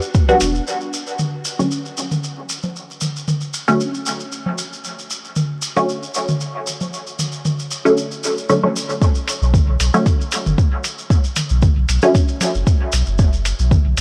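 A lightly swung sixteenth-note pulse in 4/4 drives this dub techno excerpt, which begins mid-stream as though cut from a longer piece. Detuned, filtered chord stabs carry the harmony from Em7 to Dmaj7 and later Bm7. They sit up front with a resonant, wave-folded bite, phaser colour, dub echo and sidechain pumping. Grainy acoustic maracas and overdriven analog congas and toms run throughout, the congas and toms also pumping. The deep layered kick, the round sine sub bass and the muffled, tape-tinged hi-hat each sound only briefly at the very start, then drop away until the second section: the kick returns at 9.0 seconds, with hats and bass following moments after. The mood is cavernous and hazy, with a dry, gritty hardware sound dusted in vinyl crackle.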